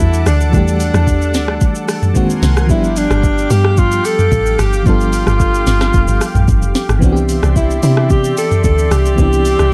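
A straight 4/4 amapiano groove from a soft-kicked, sharp-snared electronic drum kit with hi-hat, rim click, shaker and toms sits under a deep, round log drum bass, while a breathy, up-front alto saxophone with vibrato and tape echo carries a hypnotic late-night melody over a tremolo-laden FM electric piano and a lush, detuned unison pad that pumps with sidechain and chorus, in a dark, dry mix cut from a longer piece.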